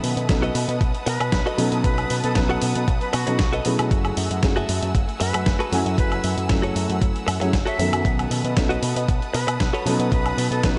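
The recording has a lightly reverberant sound with a soft top end, giving this short nu-disco clip a sleek, groovy sheen. A dark, mellow baby grand piano carries the accompaniment, colored by vintage 12-bit sampler grit, sidechain pumping and analog delay, while a lush bowed string section holds sustained chords beneath it, also pumping. A picked electric bass with an envelope filter and tube saturation sits punchy in the low end. A dusty soul sampler-style kit supplies hi-hat, a medium-tuned snare and woodblock, and a thumpy electronic kick, placed up front, joins at 0.3 seconds. A clean, direct-recorded electric guitar riff enters in the background at 0.4 seconds with subtle chorus and delay. From 1.1 seconds a breathy jazz flute with a crisp chiff and vibrato carries the melody over chords moving from B7 to F#m9 and back to B7.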